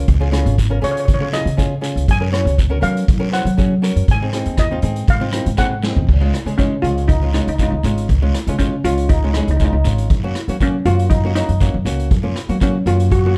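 Shimmering steel pan struck with hard rubber sticks carries a festive, sunny calypso melody in Db major at 120 BPM, soloing through the first 6.1 seconds over fingerpicked flamenco guitar, a woody, thumpy pizzicato upright bass up front, a soft-mallet drum kit with a punchy kick that fills at 5.8 seconds, and a raspy guiro in the background, all in a dark, dry mix cut from a longer piece.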